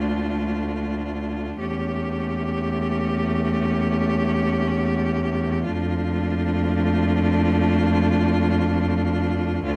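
Elegiac and solemn, this classical excerpt for cello ensemble sets a close, rich, smoothly bowed cello melody with vibrato above a clear, focused second cello line, a distant, expressive accompanying cello shaded with vibrato and portamento, and an even, up-front bass cello with a warm tone and vibrato, heard in a light reverb.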